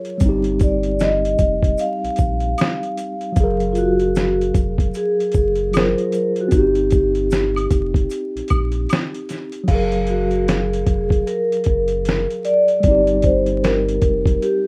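Lo-fi hip hop at 76 BPM in Eb major, nostalgic and mellow with a swung 16th feel, where a dark, ringing vibraphone with slow motor vibrato carries the melody over a mellow tine electric piano heard as if through built-in speakers, both filtered and alternating between Eb6/9 and Gbmaj9, while a pitched-down, muffled sampler-style drum kit with a thumpy kick and fat overdriven snare sits up front, a deep sine-and-triangle sub bass holds the low end, and maracas and woodblock add a live-room touch until 9.5 seconds, all in a rough home-demo mix with a small room reverb and vinyl crackle in this short cut from a longer piece.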